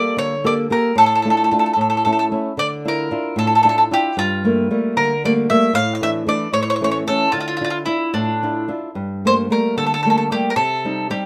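Italian folk in D harmonic minor, this romantic, wistful passage moves in a rubato 6/8 at about 75 BPM (dotted quarters), cut from a longer piece. A bright bowl-back mandolin carries the melody with picked double strings, while a warm, fingerpicked flamenco guitar accompanies beneath it; both sit up front in a moderate studio reverb and play throughout the full 11.3 seconds. The harmony circles through Gmadd9, Dm/A, A, Asus4 and Dmadd9 before a new phrase begins at 8.9 seconds and turns to Cm at 10.6 seconds.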